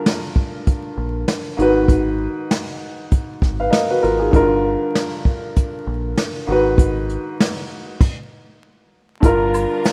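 Boom-bap hip-hop in a tough, dark mood, this short excerpt from a longer piece moves at 98 BPM in 4/4 with a lazy 16th-note swing. A dark, woody upright piano sits up front from the start, its mellow, boxy tone filtered and softened by a cassette-tape character as it moves between Gm7 and Abm7. A jazz brush kit enters almost at once, with a boomy kick, medium-tuned snare, dark cymbals, hi-hat, crash and shaker, while a round, deep fingered electric bass joins at 1.0 seconds in a low register. The groove breaks for a stop from 8.0 to 9.2 seconds, after which a lush, bowed string section with vibrato arrives on a Gm7 chord, joined by a tube shaker, woodblock and group handclap set back in the background. Light studio reverb and vinyl crackle give the whole thing a rough, home-demo feel.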